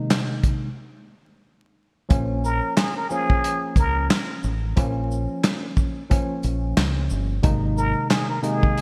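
Gritty and tough, this boom-bap hip-hop excerpt opens on a worn, slightly out-of-tune tine electric piano and a dark soul drum kit of punchy kick, snare, hi-hat, shaker and handclaps bathed in gated reverb, with a break beginning at 0.8 seconds. A round, deep fingered dub bass arrives at 2.1 seconds, and soon after a plunger-muted trumpet takes the solo melody with breathy, raspy growls, scooped notes and light vibrato through digital delay, while very quiet finger snaps join in. The bright 1980s-style digital production carries vinyl crackle and light studio reverb.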